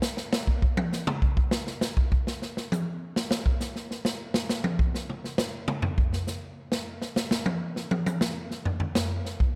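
Closely miked with detailed, light reverb, this intense, hypnotic jazz excerpt is an up-front, swinging big-band drum solo running from 0.0 to 9.5 seconds, where airy, polished hi-hat, a punchy kick, a medium-tuned snare and toms carry the whole passage on their own.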